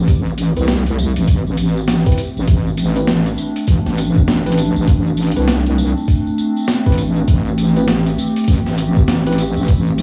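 A heavy, detuned wobble bass sits up front in this swaggering, gritty glitch hop excerpt, with tube saturation and chorus, beside a thumpy, compressed electronic kick, at 100 BPM in A minor with a 16th-note swing over a single Am7 chord. A sampler-style kit adds hi-hat and a high-tuned snare re-recorded in a large room, a jingly tambourine sits close and dry, and a nostalgic, warbling pad holds sustained chords with sidechain pumping, 12-bit grit and cassette-tape colour. From 0.6 s a clean tine electric piano plays stabs in the background through a filter sweep and tape echo, and the mix carries vinyl crackle and small room ambience.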